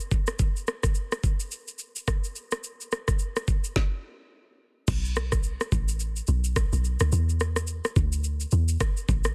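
A mellow, hypnotic afrobeats excerpt opens on an up-front electronic afro-pop drum kit with swung sixteenths, a knocking kick, a woody, softly clipped snare, rim clicks, shaker and crash, halts for a stop at 3.8 seconds, and at 4.9 seconds resumes alongside a deep, round log drum bass whose dark, percussive FM tone with a noise layer sits close in a dry, dense, heavily limited mix.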